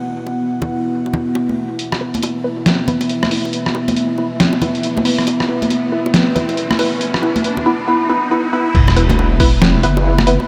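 This deep dubstep excerpt moves at 138 BPM in 4/4 with a half-time, swung feel, its mood meditative and brooding, all set in a dreamy mix soaked in a huge ambient reverb. A dark analog pad opens on an E5 chord, its detuned sawtooth and triangle tones deep, moody and evolving under chorus while a filter sweep shapes it, and ringing, close hand-played bongos and congas with dub echo join almost at once. At 1.8 seconds a pitched-down, gritty trip hop drum kit with tape warmth and a medium-tuned snare sits up front and begins the build-up. At 2.0 seconds a muted, mellow filtered dub chord stab joins it, treated with phaser, lush chorus, 12-bit sampler grit and dub echo as its own filter sweeps. An electronic riser enters in the background at 4.1 seconds, leading to the drop and impact at 8.7 seconds. There a heavy, saturated wobble bass with detuned square and sine layers arrives up front, joined briefly by a thumpy, compressed electronic kick drum.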